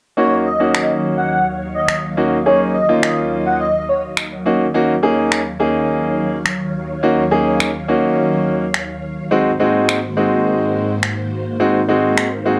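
Driving 105 BPM straight 4/4 snaps from layered, up-front electronic finger snaps push this energetic dance-pop excerpt in Eb dorian, where an airy, dreamy lead with chorus, tape echo and detuned sine vibrato sings a brief melody until 4.0 seconds over a clear, polished concert grand piano and a mellow vintage string machine of violas swirling with phaser and ensemble chorus, moving from Ebm7 to Ab7 at 9.3 seconds in a moderate studio reverb.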